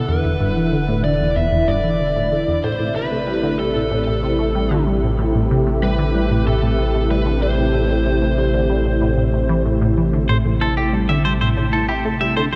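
Cosmic and expansive, this short excerpt of ambient, sequencer-driven space music at 94 BPM sets a squelchy, resonant blip pluck riff through phaser, chorus and delay over a round sine sub bass and an evolving, airy sawtooth pad with shimmer reverb, while an overdriven lead guitar through a small cranked amp sings a melody until 9.6 s and a bright, twangy clean electric guitar takes up arpeggios from 10.3 s, all moving from E7(omit3) to Am7 in a dark production bathed in huge ambient reverb.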